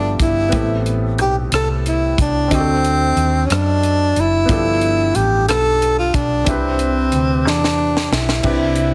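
Reverent and uplifting, this slow gospel excerpt in 6/8 at 61 BPM moves through rich extended chords in C major, from G13 through Am9, D7b9 and G9 to a resolving Cmaj9. A breathy, close-miked tenor saxophone carries the melody up front with light vibrato, soft attacks and scooped notes, over a warm concert grand piano with audible action noise and deep bass, and a round, dark hollow-body electric bass. A crisp fusion drum kit with a high-tuned snare and tight kick enters at 0.2 seconds and plays a fill from 7.5 to 8.4 seconds, all heard in a small room with light reverb and a heavily compressed, radio-like sound.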